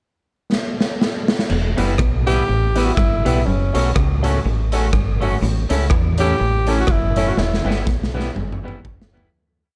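Energetic and mischievous, this short ska piece opens with a gritty, saturated garage drum fill with a side-stick backbeat, then at 1.5 seconds a round, dark fingered dub bass walks in beneath a very quiet, twangy clean guitar doubling its line with muted picking, while a slightly broken-up guitar chops the off-beats with dub echo and a worn, woody, slightly detuned upright piano adds off-beat stabs behind a clear, punchy tenor saxophone that plays hook phrases with light vibrato from 2.3 seconds, before the piece fades out over a closing drum fill from 7.4 seconds in a dark production with light reverb.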